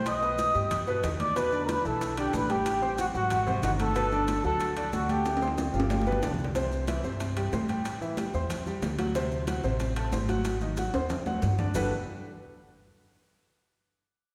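Bathed in the long, wet reverb of a church or concert hall, this sunny, danceable slice of Afro-Cuban jazz opens with a dark, breathy trumpet melody up front, shadowed by a very quiet, bamboo-toned bansuri with vibrato on a reedy second line above it. Both melodic voices drop out at 6.2 s, leaving the natural-sounding baby grand piano carrying the accompaniment through jazzy seventh-chord changes over a woody pizzicato upright bass. High-tuned, thin-skinned congas, round low-tuned bongos, ringing metal-shell timbales and grainy maracas fill out the percussion, with drum fills closing the first two sections.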